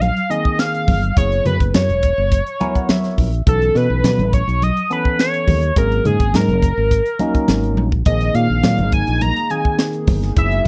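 A straight 4/4 groove at 104 BPM drives this nocturnal electric jazz fusion clip, cut from a longer piece, with a crisp, polished drum kit up front, its high-tuned snare and punchy kick sitting beside hi-hat and toms, and a drum fill landing at 7.8 seconds. A round, dark fingered electric bass holds the low end up front, while congas with a thick-skinned, hard-handed, saturated sound sit in the background. Over this, an overdriven synth lead carries the melody, gritty and screaming with a guitar-like edge, vibrato and a phaser. A barky tine electric piano, clean and heard through a combo amp with its own phaser, supplies accompaniment from 0.3 seconds and adds a fill between 2.3 and 3.5 seconds. At 8.1 seconds a shimmering, retro pulse-width pad enters in the background with chorus and a slow attack, as the suspended ninth chords cycle back to Bb9sus4 in a dry, close 1970s-style studio sound.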